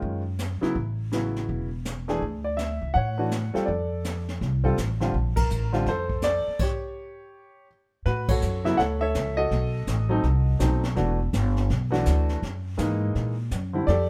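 Up front and intimate, a clear grand piano carries the melody with its action noise audible, joined by a woody pizzicato upright bass and a brushed drum kit with dark cymbals, a high-tuned snare and a boomy kick in a small room. This sophisticated, playful jazz piano trio swings at 165 BPM in 4/4, moving through rich harmony from Ebm9 and Dmaj9 to Bbmaj9 under light reverb. After a band accent at 5.3 seconds, the whole trio stops from 6.6 to 8.1 seconds, then settles into D major with another accent at 8.2 seconds in this cut from a longer piece.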